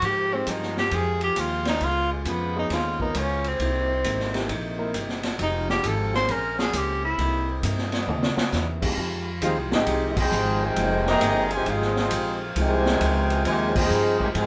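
Recorded by a band playing live in one room with moderate studio reverb, this swinging, sultry big band excerpt sits on a roomy, up-front drum kit with a high-tuned snare and punchy kick. At 134 BPM in F minor, a clear tenor saxophone with vibrato carries the solo melody until 7.6 seconds over several layers: woody pizzicato upright bass, a dark, compressed hollow-body electric guitar in the background, a very quiet, tight saxophone section holding chords, and an intimate grand piano with audible action noise that plays until 9.0 seconds. After a drum fill, a mellow trumpet section with light vibrato takes the melody at 9.4 seconds, with a trombone section on a second line and band accents punctuating the swing.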